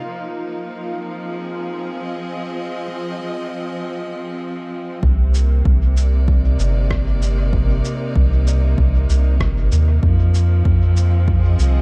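A bright, bowed chamber string section holds sustained chords, filtered with a low-pass filter, while a bubbling, detuned sawtooth texture with random filter steps sits in the background with chorus and its own reverb until 5.0 s. At that point this ambient dub piece in C minor at 96 BPM settles into its groove: a deep, round sub bass comes up front alongside a punchy, overdriven electronic kick set back in the mix, and a muffled, pitched-down shaker and rim click with dub echo enters at 5.3 s. The harmony moves from Fm7 to Cm9 and back to Fm7 in a dark, spacious and meditative production, cut from a longer piece.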